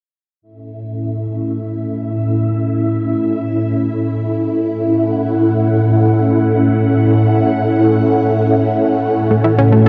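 Dark, warm production sits inside a huge, wet ambient reverb with a long tail of 7.3 seconds, giving this short fragment of a longer piece a luminous, expansive air. This is ambient, sequencer-driven space music that floats in free time. A phased string machine enters at 0.8 seconds with sustained chords spanning a broad register, its swirling, warbling vintage tone shaped by ensemble chorus, phaser and a filter sweep, with a slow attack and long release, its sound bright and up front. At 9.3 seconds an analog pluck arrives with a brief riff in the middle register, its warm, round sawtooth and square-wave voice carrying a sub octave, a fast attack, a short decay and a bright edge. Chorus and tape echo color the pluck, which sits up front in the mix as the fragment closes.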